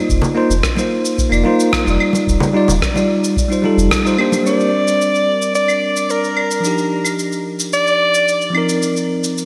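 Sunny, dreamy sunset chillout at 110 BPM in Eb major, built on a bell-like, up-front tine electric piano with tape echo and a gritty, compressed shaker, rim click and claves pattern, while a round sine sub bass with tube saturation, a deep analog kick and bright vintage congas in the background drop away by 4.4 seconds, leaving space for a clear, forceful soprano saxophone solo with light vibrato, scooped notes and tape echo from 4.5 seconds, all bathed in a lush hall reverb over chords moving between F7sus4, Ebmaj9 and Bb69.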